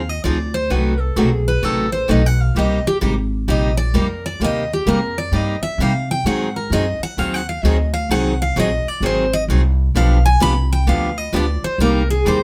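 A bright, full-bodied jumbo steel-string guitar carries the melody as a virtuosic solo through the whole 12.4 seconds, its fresh strings catching finger squeak, in this bittersweet excerpt of acoustic string swing in the jazz manouche style with a swung 4/4 feel. A second picked concert guitar, bright and up front, supplies accompaniment from 0.3 seconds over minor-key changes moving from Fm7 and F#dim7 through Cm7, Ab7 and G7, while a woody, thumpy pizzicato upright bass anchors the low end. The trio sounds like a band playing live together in a small room with moderate reverb.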